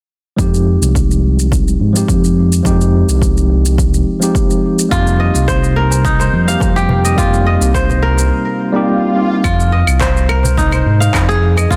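A crisp, ringing kora stands out in this meditative organic downtempo excerpt at 106 BPM in F minor, entering at 4.9 seconds with up-front fingerpicked arpeggios carried by digital delay. Beneath it, a clean tine electric piano heard through a combo amp supplies up-front chords with medium tremolo, sidechain pumping and delay, moving from Fm9 to Cm7 before it stops at 9.5 seconds. A smooth, gliding synth bass blends sawtooth and triangle tones with a moving notch, vibrato and portamento, and it pumps with the sidechain. A punchy, overdriven electronic kick anchors the straight 4/4 groove alongside layered, overdriven electronic shaker, claves and handclaps, while a clay-shelled darbuka with a natural skin sits in the background in a small room. An electronic swell leads into a closing passage on Fm7, and the recording carries light reverb and a dense, heavily limited modern master.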